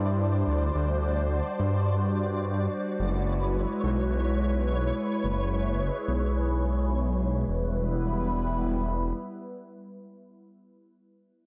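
In a straight 4/4, this melancholic, intricate IDM excerpt opens on a swirling, nasal analog pad, wave-folded and coloured by phaser and chorus, sustaining suspended chords above a deep, rumbling bass of detuned, saturated saw voices that beat against each other up front. High above, a faint, grainy texture flickers with its own reverb until 7.5 seconds, when the harmony settles onto E minor. The bass drops out at 9.1 seconds and the pad carries on alone until 10.5 seconds, all within a light digital ambience.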